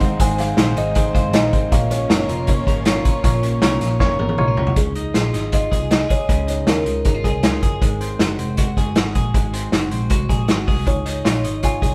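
Heard as a band playing together in one room, the recording carries a moderate studio reverb that gives it a natural, lived-in space. This is a nostalgic, breezy slice of jangly indie pop at 157 BPM in 4/4 with a straight feel, set in D-flat major and cut from a longer piece. A warm, compressed twelve-string electric guitar plays clean picked arpeggios throughout. The vintage drum kit sits up front with a punchy kick, medium-tuned snare, toms, hi-hat and a pumping small-room character, while a dark, foam-muted picked bass adds round, amped low notes. A woody kalimba carries the melody with a ringing thumb pluck alongside a reedy, worn electric piano that sounds slightly out of tune through its built-in speakers, and a lush sawtooth string machine pads the opening with very quiet sustained chords before dropping out at 4.7 seconds. A drum fill at 4.0 seconds leads into the second section, where the harmony moves from Ab and Bbm toward Dbadd9 and Ab7, and the kalimba and electric piano return together at 10.9 seconds.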